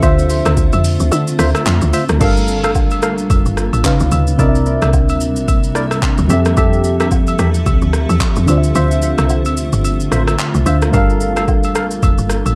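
A woody, punchy log drum bass grounds this hypnotic, soulful amapiano piece, opening on a drop where the kick drops out from 1.1 to 2.2 seconds and again from 8.8 to 10.9 seconds. A round, warbling FM electric piano with chorus carries the jazzy ninth chords, while hollow, organ-like stabs with chorus and delay cut in until 11.9 seconds, and a cloudy granular pad breathes with sidechain pumping in the background. The up-front, overdriven deep house kit of deep kick, handclaps, rim click, hi-hat, shaker and crash sits over close, dry agogo bells and woodblock, all in a dark, largely dry production.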